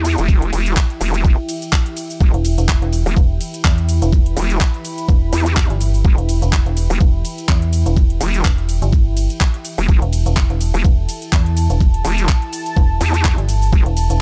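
Driving 125 BPM bass house in E minor, with a 16th-note swing of 56% giving the groove a bouncy, aggressive push as it sits on a single Em chord throughout this cut from a longer piece. A knocking, up-front electronic kick enters at 0.3 s, while a garage drum kit of handclaps, metallic hi-hats, ride cymbal and shaker runs from the start with a tape-warm, layered feel. Underneath, a nasal, wobbling vowel-sweep bass with formant filtering, overdrive and chorus holds the low end up front, and at 2.3 s a dark, metallic FM bass with tube saturation joins it in the same register. High above, a bright, evolving pad of detuned sawtooth layers with a filter swell, slow attack and long release sustains chords through chorus. The bass parts and pad pump with sidechain compression, and the mix sits in a digital ambience.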